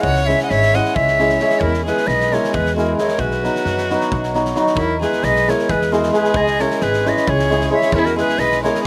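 A dry recording with little reverb opens on a Balkan wedding band in full cry, playing an exuberant, virtuosic folk tune in a straight 7/8 and tuned slightly low at A4 = 438 Hz. A breathy, bright ney carries the melody with vibrato and a reedy edge, while a rich violin, bowed sul tasto with an airy, intimate tone, sings a second line just beneath it. Up front, a shimmering hammered dulcimer rings out the accompaniment, and a woody, thumpy upright bass played pizzicato anchors the low end. A loose acoustic drum kit, set back in the mix, adds a punchy kick and a fat snare in a pumping studio room. All five parts play throughout this short cut from a longer piece, moving from C#m through E and B and twice stating the same section over roughly 9 seconds.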